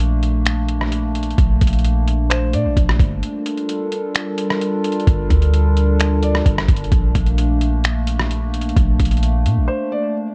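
A warbly, nostalgic pad holds sustained chords over a deep, boomy 808-style bass and a gritty, pitched-down sampler drum kit of thumpy kick, hi-hat, rim click and finger snaps, setting up a melancholic, ethereal cloud-rap groove at 130 BPM in half-time. The pad carries chorus, its own reverb and a sidechain pump as the harmony moves from Bbmaj7 to Gm7 and back, with brief breaks at 3.2 and 9.7 seconds. A soft, felt-muted upright piano offers short, filtered phrases with tape echo, and the whole excerpt has a dry, worn cassette character with drifting pitch.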